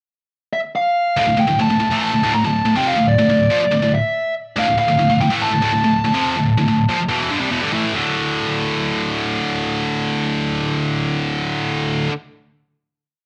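A bluesy overdriven lead guitar opens at 0.5 seconds with a dark, distorted, picked melody that roams freely in a high register, while a bright, double-tracked high-gain rhythm guitar enters at 1.2 seconds with a heavy power-chord riff over D minor. This aggressive metal piece moves at 142 BPM in a straight 4/4, both guitars up front, until the lead drops out at 7.5 seconds and the riff gives way to a final D5 chord ringing out to 11.3 seconds. Moderate studio reverb gives the whole piece a dark, warm production.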